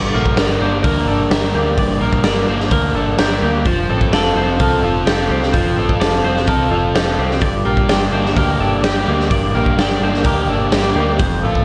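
Brooding and dreamy, this short shoegaze-tinged rock excerpt in G minor moves at 128 BPM in a straight 4/4 over a Gm, F, Gm progression, with a crunchy overdriven guitar riff up front bathed in lush chorus, a hollow-bodied semi-hollow guitar also playing a riff in the background through reverse reverb, a bright, twangy clean guitar picking arpeggios high behind them with analog chorus and slapback echo, a round, dark dub bass underneath, and a gritty, saturated garage drum kit with a punchy kick and rolled-off top that joins at 0.3 seconds, all set in a small, lightly reverberant room.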